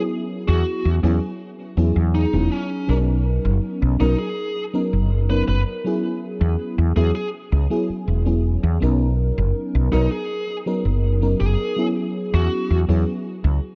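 A dark, cassette-tape haze with light reverb wraps this dreamy, nostalgic vaporwave excerpt, where a lush FM electric piano with a soft pad layer carries analog chorus and tape echo as it sways between E6/9 and Bmaj9 chords. Up front, a round, punchy fretless electric bass with a woody, hollow-body tone anchors the low end from 0.5 seconds. A distorted, high-gain lead guitar sits further back, its picked melody trailing tape echo until 12.8 seconds.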